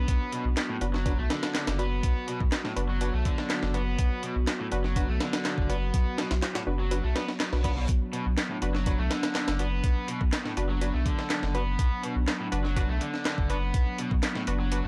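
A straight, driving breakbeat pulse sets this energetic, raw excerpt from a longer piece. Its sampler-style drum kit is pitched up, compressed and up front, with a thumpy kick, a high-tuned snare and hi-hat, and analog electronic handclaps re-recorded in a small room sit alongside it. Underneath, a saturated triangle sub bass holds a deep, thick, sustained low end. A bright, double-tracked overdriven stack guitar plays a picked riff through tape echo, while a nasal, band-passed sawtooth chord stab with chorus and tape echo moves through a filter sweep across the whole passage. Behind them, a nostalgic, warbling lo-fi pad of detuned square and triangle waves holds mellow chords with chorus, built-in reverb and sidechain pumping. A very quiet reverse cymbal slips in at 7.4 s, and the dry, gritty cassette-tape sound gives the track a rough, hardware-bound character.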